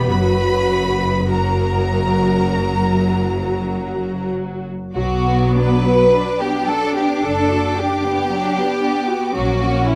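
A clear, smooth violin section stands up front on a second line, its even, vibrato-laden bowing carrying the weight of this slow, melancholic and solemn romantic movement for string orchestra in B minor, cut from a longer piece. Above it, a rich, focused violin section sings the melody high in its range, sitting close and quieter in the balance. A rich viola section fills in the accompaniment with a smooth top, while a focused, distant cello section and an intense double bass section share the bass. All five sections play throughout, the tempo easing between 47 and 58 BPM in a flexible, rubato 4/4. The harmony moves from F# to Bm at 5.0 seconds and settles on F#/A# at 9.4 seconds, all within a dark production with moderate large-room reverb and a faint mains hum.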